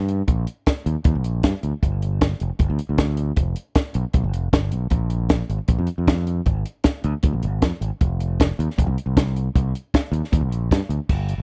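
A growling, bright fingered electric bass with overdrive sits up front, joined at 0.1 seconds by a compact acoustic cocktail drum kit with a dark, smooth, rolled-off sound, a high-tuned snare, punchy kick, hi-hat and crash, in this wistful, intricate math rock and midwest emo fragment of a longer piece, captured as a dry, close 1970s-style studio recording.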